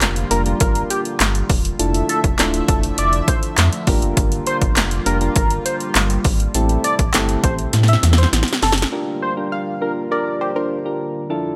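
Dance-pop at 101 BPM in G dorian, energetic and driving, this excerpt opens on a drop where punchy, tape-warm analog drum machine kick, snare, claps and hi-hat sit up front over a deep sine-and-triangle sub bass with octave, soft electric-piano-like keys and a shimmering, retro pulse-width pad all pumping to the sidechain, while a bold, detuned sawtooth lead doubled in octaves carries the melody with vibrato through Gm7, Dmadd9 and Am7 changes, until a drum fill ends the beat at 9.0 s and a gentle, wave-folded pluck with digital delay enters at 9.5 s in a bright 1980s-style digital mix with light reverb.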